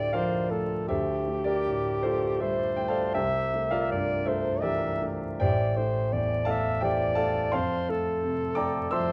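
Hazy and mysterious, this short excerpt from a classical, impressionist duo for alto saxophone and grand piano drifts in 3/4 at a rubato pace of roughly 75-87 BPM. The alto saxophone carries the melody in a classical style, its tone smooth at the top and touched with vibrato, sitting up front as the solo voice between G4 and E5. A concert grand piano accompanies from A1 to E6, warm and open with deep bass and long sustain, also placed up front, and both instruments play throughout the 9.1 seconds. The harmony moves from Dm7 through C69 and A7sus4 to Fmaj7, giving the passage a suspended, dreamlike color. Close, detailed microphones catch the players inside a moderate recital hall reverb, while vinyl crackle lends the sound an aged, misty patina.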